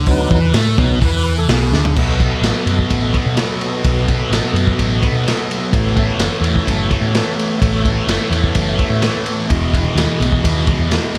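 A bright, double-tracked fuzz guitar riff sits up front in this trippy, kaleidoscopic psychedelic rock excerpt, its phaser-tinged distortion riding over a round hollow-body bass, a fat tonewheel organ that solos for the first 2.0 seconds before settling into sustained chords through a slow rotary speaker, a gritty, saturated breakbeat kit with dark cymbals and a tight kick that drops a fill at 1.7 seconds, and distant, low-tuned congas that are barely audible.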